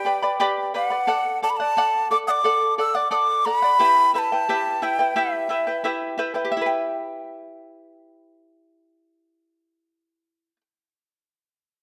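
In a straight 2/4 at 88 BPM, this festive yet melancholic Andean folk excerpt in E minor moves through G, D and Em as an up-front hollow, airy wooden quena sings the melody with vibrato and tongued notes until 5.8 s, while a shimmering, fingerpicked charango with double strings accompanies and plays on alone until 10.6 s, all set in a moderate concert hall reverb captured by close, detailed microphones.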